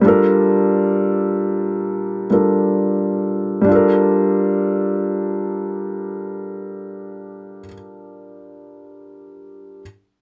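A woody upright piano sits up front in this short, soulful R&B fragment, playing accompaniment in a low-to-middle register across its full 9.8 seconds. Its tone is warm and natural, with a long sustain and the audible noise of the instrument's action lending an intimate, close-up presence. The harmony opens on a lush minor-ninth chord that sets a sultry mood. The slow pulse carries a gentle swing on the sixteenth notes, and the passage moves into a new section at 3.7 seconds. The dry, close sound of a 1970s-style studio is touched with light reverb, and the clip is cut from a longer piece.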